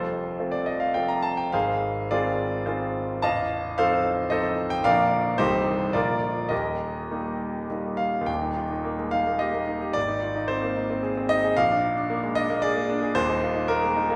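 A clear concert grand piano opens at 0.0 seconds, playing alone throughout this short excerpt from a longer romantic character piece in Eb major. The mood is warm and lyrical, moving in 3/4 at roughly 100-114 BPM with a flexible, rubato feel. The piano sounds intimate and polished, with deep bass, long sustain and audible action noise from the instrument itself. The opening passage drifts through F, Fm7/Ab and F7/A before settling toward Bb, Cm and Eb. A new passage begins at 8.3 seconds and moves through Ab and Bb7 to an open Eb5 at 13.2 seconds. A recital hall reverb, heard from further back in the room, lets each note ring into the space.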